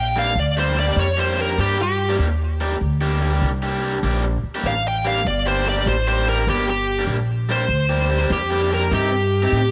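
A smooth, overdriven lead guitar picks a soulful melody up front over a woody, thumpy pizzicato upright bass, also up front, from the very start, and a crunchy overdriven guitar joins with its riff at 0.2 seconds in this brooding, swung electric blues shuffle at 98 BPM in G minor, set in a moderate echo chamber reverb as the harmony moves from G minor to C minor at 8.9 seconds.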